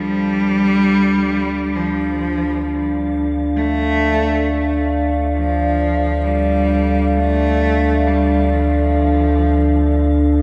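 Dark ambient drone in free time and D minor, ominous and unsettling, where a deep rumbling drone on D2 with its own reverb and subtle chorus sits beneath a moody, detuned analog pad holding sustained chords through lush chorus, while a rich bowed cello sings a smooth, vibrato-laden melody between F3 and A3 through diffuse ambient delay, a very quiet, crystalline glass pad glints high above, and the whole excerpt hangs in a vast, echoing cathedral space.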